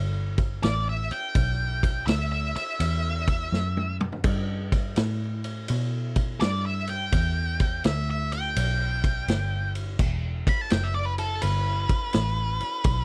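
Blues rock in the power-trio mould, with a southern rock edge, this heavy, brooding passage, cut from a longer piece, sits in E minor at 83 BPM in 4/4 with a swung eighth-note feel, tuned a little flat of standard pitch. A vintage muted electric bass opens at 0.0 seconds, its picked, foam-muted tone round and amped as it holds the low end on a single Em chord. The vintage drum kit joins almost at once, a saturated acoustic studio sound with a punchy kick, a medium-tuned snare, toms, dusky crash and ride cymbals and a rolled-off top, and it rolls through a fill from 3.5 seconds. Over this, an octave-fuzz lead guitar plays a distorted, picked solo in a high register from 0.6 seconds onward. The recording is dry and close in a 1970s studio style, with all three instruments placed up front and the drums carrying a gritty, warm character.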